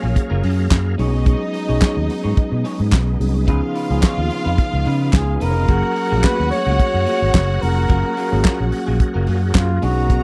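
A breathy, whispered flugelhorn takes the melody from 5.2 s in this celebratory, joyful disco excerpt, riding over a dry 70s drum kit with a fat snare and tight kick, a growly, up-front fingered electric bass, a lush bowed violin section on a second line, mellow tine electric piano, a slightly broken-up picked electric guitar, a gritty overdriven tonewheel organ with chorus vibrato and fast rotary speaker sitting in the background, and crisp group handclaps, all captured in a close, small-room 1970s-style studio sound.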